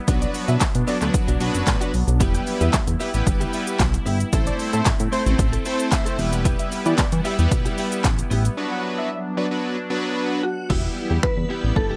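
A dry mix with little reverb frames this driving, energetic dance-pop excerpt in E minor, moving at 113 BPM in a straight 4/4. An overdriven deep house kit sits up front, its punchy kick and fat snare joined by hi-hat, shaker, handclaps, finger snaps and crash cymbal, while a glossy, retro synth bass of pulse and sawtooth tones pumps under sidechain compression. A bold, detuned sawtooth polysynth carries the chords, backed in the background by an evolving, resonant pad that swells slowly through chorus and ring modulation, a scooped, direct-recorded clean electric guitar riff, and a very quiet, grainy egg shaker. A thick unison lead with sub-octave weight and vibrato sings the melody mellowly behind the mix through digital delay, over a progression of Bm, Em, Am and back to Em. A break arrives at 8.6 seconds, and at 10.4 seconds a shimmering, warbling FM bell with a dreamy halo steps forward to carry the melody into the closing Em.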